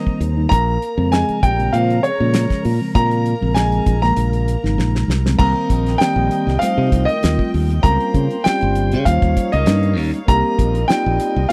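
Electric jazz fusion in Bb dorian at 98 BPM, nocturnal and intense, in which a clear grand piano carries the melody over a veiled, breathy cup-muted trombone second line, mellow tine electric piano with analog chorus, sul tasto chamber strings sustaining chords in the background, a growly, punchy fingered electric bass and a damped 70s drum kit with a fat snare that plays a fill from 4.8 to 5.4 seconds, captured in a dry, close 1970s-style studio sound.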